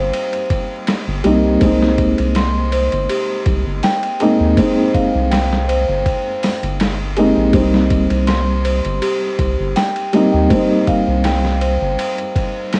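Melancholic and cinematic, this trip hop excerpt at 81 BPM in C minor sets a muted, boxy felt-muted upright piano with harmonic tremolo and tape echo under bell-like celesta arpeggios, over a round, nasal analog bass and a dusty, overdriven soul sampler-style drum kit with a thumpy kick, all moving from Cm7 to Abadd9 and back inside a cassette-recorded booth with vinyl crackle and 12-bit grit on the keys.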